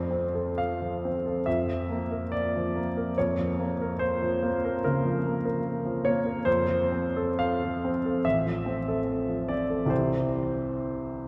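Flowing in a free rubato over a 4/4 pulse, this fragment of a romantic classical character piece for solo piano has a warm, hopeful mood. The grand piano sits up front with a clear, intimate tone, audible action noise and long sustain, ranging from A1 to F5 as it moves through a brief harmonic passage with a darkening minor colour at 3.2 seconds. A wet church reverb of about 3.2 seconds surrounds the instrument, giving it the spacious bloom of a church or concert hall.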